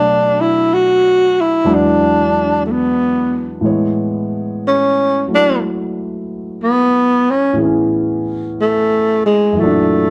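A breathy tenor saxophone carries the melody in this short jazz passage, cut from a longer piece, its whispered tone shaped by vibrato, soft attacks and scooped notes that keep the top end smooth. The mood is intimate and tender, moving at a slow 61 BPM in 4/4 with a swung eighth-note feel in A major. A concert grand piano supplies the accompaniment from 0.0 to 10.1 seconds, its deep bass giving the harmony a rounded floor beneath the saxophone's solo line. Both instruments sit up front, though the saxophone is the more prominent voice. The chords travel from Bm7 to E9 and settle on Amaj9 before turning to F#7alt at 9.6 seconds. Light reverb and a dark, warm production wrap the whole passage in a close, intimate atmosphere.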